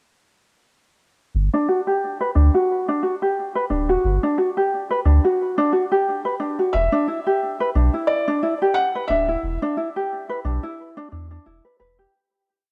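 Autumnal and delicate, this short folktronica piece moves in 4/4 with a gentle swing on the sixteenths. A round, sine-like sub bass enters at 1.3 seconds with a sustained, dub-style line sitting up front. A mellow, thumb-plucked acoustic ukulele joins almost at once with an eight-step arpeggiated sequence, shaded by a low-pass filter and tape echo. At 6.7 seconds a felt-muted upright piano brings a motif-based melody of song-like phrases, its thin felt and audible action noise giving it an intimate, short-sustained tone, also touched by tape echo, as the harmony shifts from Gmaj7(no3) to Em7. A moderate spring reverb and the homespun character of a cassette home recording frame the piece, which fades out from 8.5 seconds.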